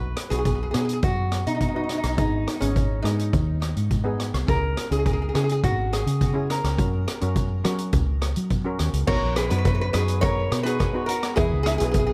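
A nasal lap resonator guitar played with slide and fingerpicks carries the melody up front through a digital delay, over shimmering double-second steel pan accompaniment and a foam-muted fingered electric bass, as a street-band drum kit with a boomy kick and rolled-off top joins at 0.2 seconds and a very quiet cowbell arrives at 9.1 seconds, giving this dry, carefree and bouncy calypso excerpt its easy lilt.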